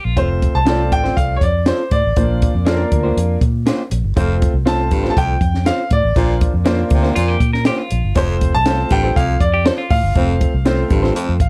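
Danceable and warm, this uptempo 1960s-style soul groove is cut from a longer piece and moves in a straight 4/4 between F and Bbadd9 chords. A compact cocktail drum kit with a punchy kick, a high-tuned snare and hi-hat sits beside a round, foam-muted fingered electric bass that stays up front, while a woody, clear upright piano fills out the accompaniment. A brilliant grand piano carries the melody in its upper register, and an electric guitar through a small old amp adds slightly broken-up, lo-fi stabs in the background. A raspy, gritty baritone saxophone with light vibrato joins at 4.2 seconds with a close-miked low riff, and a clean semi-hollow electric guitar with tremolo returns at 7.2 seconds for its own riff after a brief opening appearance. The room is dry with little reverb, and the upright piano slips in a short fill at 11.2 seconds.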